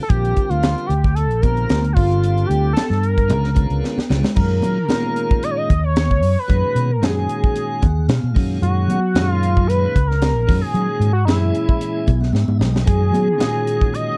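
An up-front, octave-doubled sawtooth lead with chorus and vibrato carries a bold, retro melody over a punchy fingered bass, a crisp, airy drum kit with a high-tuned snare, ringing congas in the background and a piping tonewheel organ through a slow rotary speaker in this bright, funky jazz fusion piece, which shifts to a new key at 4.4 seconds and features organ fills at 7.6 and 11.8 seconds.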